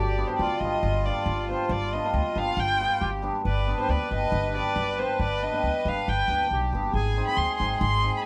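A single bowed violin, dark-toned and full of vibrato, opens this bittersweet, soulful klezmer passage, carrying the melody up front alongside a pizzicato upright bass and a reedy accordion on a second line. At 0.2 seconds a hammered cimbalom joins with a shimmering, ringing accompaniment. The bass sits prominently with thumpy gut strings and a woody body, while the close-miked, dry accordion shows slow beating in its full sound. The harmony rests on G before shifting to Ab at 7.0 seconds, and the bass drops out at 8.1 seconds just ahead of the other parts. Light reverb and close, detailed microphones frame this brief section in a straight 4/4, cut from a longer piece.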